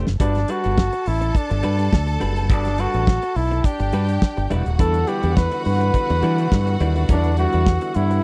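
A warm, smooth-topped flugelhorn carries the melody of this celebratory, danceable disco excerpt, backed by a lush symphonic string section, a clean hollow-body electric guitar and a bright, punchy fingered bass over a damped 70s drum kit with a fat snare and tight kick that opens with a fill. Harmony moves from Gmaj7 to Em7, and at 4.8 seconds a gritty overdriven tonewheel organ slips in behind with chorus vibrato and slow rotary speaker to hold sustained chords. The sound is dry and close, in the manner of a 1970s studio.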